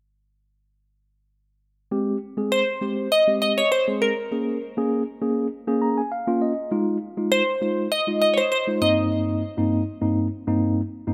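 A glassy wavetable pluck carries the melody from 2.5 s, its crystalline, detuned unison tone sharpened by a fast attack, a decaying tail, a noise layer and a touch of chorus. This short excerpt of an upbeat, carefree pop piece moves at 100 BPM in a straight 4/4, in Ab major. Underneath, a mellow tine electric piano supplies the accompaniment from 1.9 s, its clean sound heard as if through built-in speakers, and it steps forward with a brief fill around 5.5 s. The harmony drifts through Abmaj7, Bbm7, Fm7 and Cm7/G, giving the passage a relaxed, easy glow. Both parts sit up front, with the pluck a little louder than the piano, and a moderate plate reverb lends the mix a roomy shimmer.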